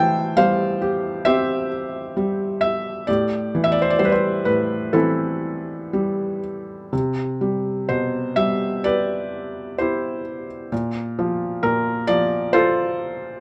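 The tempo drifts freely in a rubato 4/4, moving between 59 and 68 BPM, which gives this short classical excerpt a lyrical, breathing quality. A single felt-muted upright piano plays throughout, spanning A2 to A5, its tone soft and mellow with a thin felt layer, short sustain and audible action noise that makes the performance feel intimate. The mood is dark and wistful, opening in A minor on an Am7 chord before shifting toward C major with a Cmaj7 at 6.9 seconds. A Bbmaj7 arrives at 10.7 seconds, adding a shaded turn before the passage breaks off, as it is cut from a longer piece. Close, detailed microphones place the piano up front, with only light reverb around it.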